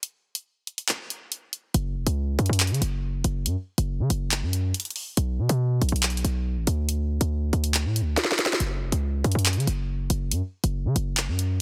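A menacing, cold drill beat opens with the electronic drum kit alone, its sharp snare, handclaps and warm hi-hats sitting up front in a short break. At 1.7 seconds a hard-hitting 808-style bass arrives, punchy and heavy, a sine tone with a noise layer, a fast attack and a decaying tail, also placed up front. The track moves at 140 BPM in 4/4 with a half-time feel, set in F# harmonic minor with tuning at A4 = 441 Hz. A drum fill at 8.2 seconds briefly punctuates the groove before the passage continues. The mix is dry and squeezed into a heavily compressed, radio-ready sound, and the piece is cut from a longer track.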